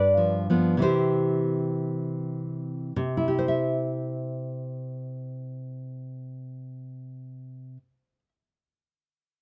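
Nostalgic and tender, this brief romantic excerpt for solo classical guitar unfolds in 2/4 with a freely breathing rubato feel, easing into a slower pace over its first 3.0 seconds. A single nylon-string guitar carries everything, fingerpicked and placed up front, its tone dark and full-bodied with a deep classical resonance across a range from G2 to E5. Close, detailed microphones catch the intimate grain of the playing, including a finger squeak along the strings. A G7 chord resolves to C early on, giving the opening a gentle sense of arrival before the music moves into a second section at 3.0 seconds. Light reverb lends a soft halo of space, and the passage ends at 8.3 seconds, clearly cut from a longer piece.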